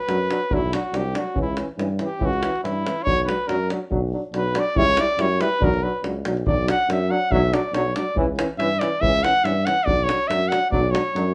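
A present, lightly vibrato-touched cornet opens this restless, virtuosic Balkan brass band passage at 141 BPM in swung 2/4, soloing warmly up front in B harmonic minor over the Bm and C#dim changes while a bright, distant trombone and a clear euphonium sit in the background, a punchy, smooth-topped tuba carries the bass, and a deep acoustic davul in a small room drives the percussion, all cut from a longer piece and set in a wet studio reverb.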